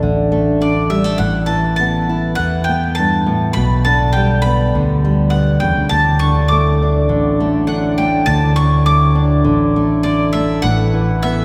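Acoustic folk in D major at a relaxed 102 BPM, this peaceful, gentle passage from a longer piece opens with a fingerpicked steel-string acoustic guitar and a round, punchy fingered electric bass up front, with a bright, double-strung bowl-back mandolin taking the melody from 0.6 s. The harmony drifts through open suspended and added-ninth chords, Dsus2, Asus2, G/B and Dadd9. At 5.9 s a distant woodwind section with light vibrato and soft attacks adds sustained chords in the background, all of it set in a lush church reverb.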